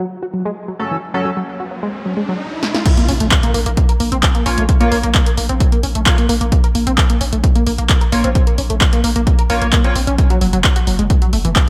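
A tight, detuned sawtooth synth riff with tube saturation and sidechain pumping opens this driving, relentless peak-time techno excerpt at 131 BPM in Bb harmonic minor, joined by a rising sound effect and edgy, nasal sync-sweep polysynth stabs with 12-bit grit. A fill from a tape-warm analog drum machine at 2.6 seconds leads into the drop at 2.9 seconds, which brings an impact, a punchy up-front electronic kick, the drum machine's crash, handclaps, hi-hats and snare with gated reverb, and, moments later, a growling, buzzy 808-style bass under a low-pass filter, all set in a bright 1980s-style digital sheen with light reverb.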